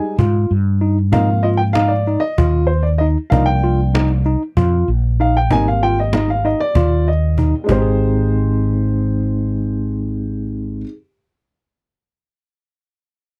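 Set in a straight 7/8 at 192 eighth-note beats per minute, this bright, driving piece of progressive instrumental band music moves through Ab lydian over Fm7, Ab6, C7sus4 and Abmaj7. A baby grand piano carries a solo through the opening 7.7 seconds, its tone dark, mellow and boxy, with short sustain and audible action noise that make it feel intimate and up front. Beneath it, a clean tine electric piano plays arpeggios through its built-in speakers, while a round, amped fretless electric bass holds the low end close to the listener. A woody cajon with faint snares sits distant in a large room and drops out at 7.8 seconds, leaving the keys and bass to carry on. The overall sound is dry, with little reverb, and the passage is cut from a longer piece.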